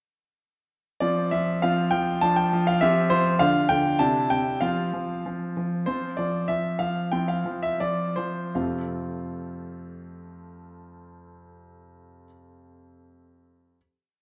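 A clear, up-front grand piano carries this whole cheerful, playful classical-period sonatina alone in a two-beat rubato, setting a single-line melody over repeated bass notes, easing into a slowdown from 5.2 seconds through the short coda and landing on a held final chord at 8.6 seconds, all bathed in the wet reverb of a recital hall within a dark production.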